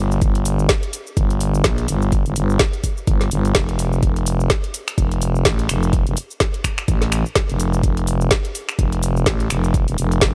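A thick, growling FM bass with overdrive and sidechain pumping opens this swaggering, bouncy bass house excerpt, joined almost at once by a garage kit of finger snaps, metallic hats, shaker and a woody snare, then a knocking electronic kick, all riding a swung groove in a dry mix with the bass and kit up front.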